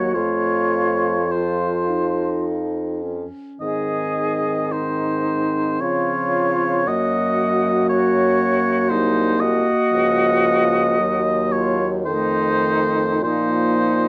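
From the first moment a wind quintet sounds together in a slow, elegiac and solemn romantic movement in rubato 3/4 at about 49-60 BPM, with a pure, distant silver concert flute carrying the melody over an up-front oboe second line, a mellow, punchy French horn and a soft-attacked clarinet in accompaniment, and a roomy bassoon bass, heard through light reverb and the warbling pitch drift of worn cassette tape across this 14.1-second passage cut from a longer piece.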